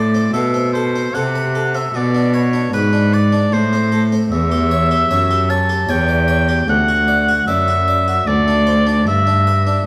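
In a steady, straight triple metre, this radiant and serene excerpt from a baroque-style classical sonata movement sets a clear, vintage-toned solo oboe up front, singing the melody with vibrato. A brilliant harpsichord in the Italian style, with plucked octave strings, supplies the continuo accompaniment, while a single bowed cello carries a smooth, even bass line, also with vibrato. A resonant recital-hall reverb surrounds the trio as the harmony moves from A minor through E minor colours toward D and G.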